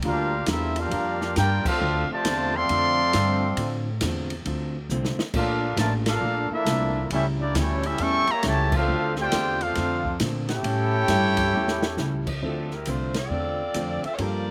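Dry, this sultry, swinging big band passage, cut from a longer piece, sets a clear trumpet section with slapback echo over a brilliant trombone section, a woody pizzicato upright bass, a drum kit with dark cymbals and a boomy kick marking band accents and two fills, and a clean hollow-body electric guitar in the background, until at 12.4 s a vibrato-rich saxophone section takes the melody over a present, short-sustained baby grand piano.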